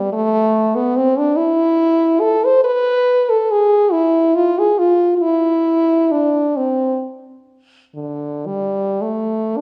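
Set in a resonant recital hall with a 1.4-second reverb tail, this brief classical excerpt features a lone, clear French horn played up front with light vibrato, ranging from D3 to C5 in A minor and unfolding a yearning, lonely line in a free, rubato 6/8 at roughly 35-49 dotted-quarter beats per minute for its 9.6 seconds.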